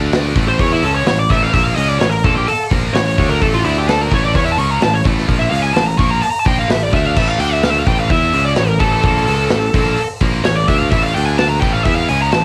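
A straight 4/4 pulse at 128 BPM drives this dark, heavy metal excerpt, cut from a longer piece, with a big acoustic rock kit up front, its punchy kick, medium-tuned snare, hi-hat and bright crash cymbals entering at 0.1 seconds beside a growly, direct electric bass picked low in its range. Two distorted rhythm guitars, one heavy and one scooped and set back in the mix, play riffs over chords that move between A and D5, while a high-gain lead guitar takes a soloing melody from 0.5 seconds, climbing as high as C#6. The sound is dry and homemade, with the guitars and drums carrying a cassette-tape grit and a faint mains hum beneath it all.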